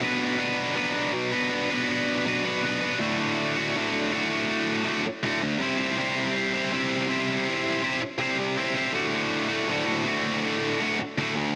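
Restless and cathartic, this short rock passage is cut from a longer piece and carried entirely by a single electric guitar. The guitar is tight, bright and distorted, picked and double-tracked, sitting up front with a digital delay trailing its lines as it ranges from low D2 up to C5. The opening stretch moves in a half-time feel over a B minor chord before the music shifts at 3.0 seconds into a new section that moves between D and C, returning to D at 9.0 seconds. A moderate studio reverb gives the guitar a modest sense of space, while the dense, heavily limited modern master keeps the sound pressed and forceful.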